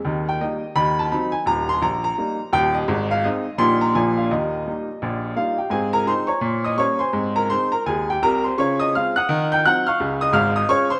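A clear, woody upright piano opens this brief stride jazz excerpt alone, swinging at 169 BPM in 4/4 with an exuberant mood. Its playing covers a broad span from Eb1 up to G6, and the tone is smooth and vintage, sitting up front in a rough home demo mix. The first passage centres on Eb major, moving through chords such as B13b9/D#, Ab and Bb7 before settling back on Eb. At 5.7 s the music shifts to Ab major, passing through Gdim/Bb, Dbmaj7 and Cdim/Eb before landing on Db. A lush hall reverb with a moderate, lingering tail surrounds the piano, and the tuning sits slightly low at A4 = 436 Hz, adding to its old-time character.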